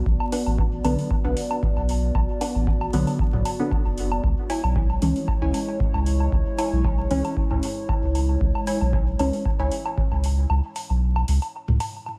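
A round, soft sub bass sits up front in this dub techno excerpt, its tube-saturated tone pumping against the beat in a deep, cavernous mood. An overdriven analog kick and metallic, gritty hi-hats carry a gently swung 4/4 pulse, while tape-toned electronic woodblock and toms, re-recorded in a small room, throw dub echoes into the space. A dark, detuned analog pad holds long sustained chords under chorus and phaser, moving from B minor to C sharp minor at 4.2 seconds. Two chord stabs color the groove: a mellow, deep one with chorus, phaser and dub echo, and a crisp, bright wavetable stab with a wave-folded, moving-notch character that also trails into echo. The mix is echo-heavy and dusted with vinyl crackle in a light digital ambience, and the kick drops out at 10.5 seconds, leaving the pad, bass and percussion to hang in the reverberant haze.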